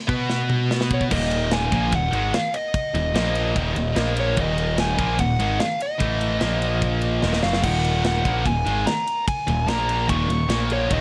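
A relentless, epic heavy metal passage opens with three distorted rhythm guitars (a bright high-gain one, a tight one in the background and a very quiet double-tracked sludgy one) riffing over a punchy, up-front fuzz bass and a tight acoustic metal kit whose fills roll in from 0.3 seconds and again around 7.2 seconds. At 0.9 seconds a dark, smooth lead guitar enters up front, its overdriven melody trailed by digital delay. Light reverb surrounds the whole, with the kit sitting in a studio room, and the music is cut from a longer piece.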